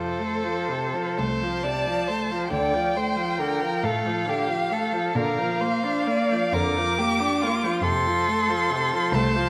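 A rich first violin sings the serene, tender melody with vibrato, soft attacks and expressive portamento over a focused second violin line, a smooth, even viola accompaniment and a cello bass that also slides expressively, all bowed by single players in this slow, rubato string quartet movement in F major and 6/8 at about 39-47 BPM, moving from F through Dm and Bb back to F in a wet recital hall reverb before the excerpt breaks off at 9.5 seconds.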